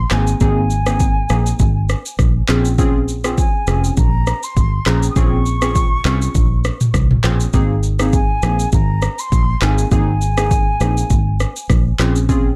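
Afrobeats with a joyful, sunny mood and a lightly swung groove, this short cut from a longer piece moves between Abadd9 and Bbm7 chords. An electronic afro-pop drum kit sits up front, its deep kick, handclaps, rim click, shaker and toms given an overdriven edge and the character of a small room. A fingered electric bass, round, dark and foam-muted, holds the low end up front. Glassy digital keys supply the accompaniment with detuned, wave-folded tones that have a fast attack, decay, and carry chorus and a filter sweep. Floating above, a mellow jazz flute sounds airy and distant, its tongued, expressive phrases colored by vibrato and delay until it stops at 11.7 seconds. The production is dark and warm with little reverb.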